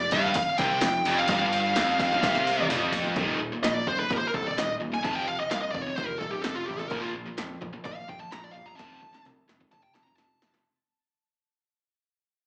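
Relentless and aggressive, this heavy metal clip sets a dark, up-front high-gain lead guitar with slapback and tape echo over a bright, double-tracked overdriven riff guitar, a second distorted riff guitar sitting in the background until 3.2 seconds, a round, dark overdriven picked bass, and a punchy analog drum machine re-recorded in a small room. From 3.2 seconds the lead breaks into a solo as the whole clip fades out, with drum fills marking the turns, including one from 8.8 seconds. It sounds like a live gig heard through a club's PA, with moderate club reverb and a small-speaker character.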